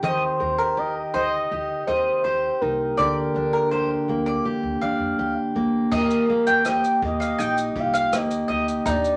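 This acoustic pop excerpt moves at an unhurried 82 BPM in a straight 4/4, carrying a wistful, tender mood over chords of Eb6, Gm7/D and Eb. Up front, a full-bodied jumbo steel-string guitar is picked as accompaniment, with finger squeaks audible, while a bright, double-strung mandolin plays arpeggios beside it. Beneath them, a woody pizzicato upright bass sits low in the mix. The melody comes from a mellow, round, horn-like synth lead that blends sawtooth and sine tones with a sub octave, a soft attack, sustained notes, a filter sweep and chorus. At 5.9 seconds an unplugged drum kit joins from a distance in a roomy studio space, played with bundle sticks, bringing a punchy kick, a dark crash cymbal, rim clicks and shaker. Moderate studio reverb gives the whole arrangement a gentle sense of space.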